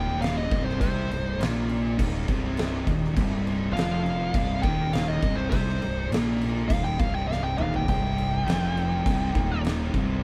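A brooding, ominous stretch of stoner and doom metal in C minor opens at once with two thick fuzz guitars picking a riff in the background, a growly, overdriven fingered electric bass, and a dark, compressed fuzz lead guitar playing a solo melody up high. Beneath them, a very quiet overdriven tonewheel organ holds gritty sustained chords, with its key click and slow rotary speaker faintly audible. An oversized, low-tuned acoustic drum kit enters at 0.2 s and sits up front, with a punchy kick, fat snare, toms and dark cymbals in a pumping stone room. The tempo is a straight 102 BPM in 4/4 over a single C minor chord, and the drums play a fill around 7.3 s. The lead guitar stops at 9.6 s while the rest of the band plays on to the end of this cut from a longer piece, all sounding live together in one small room with moderate reverb.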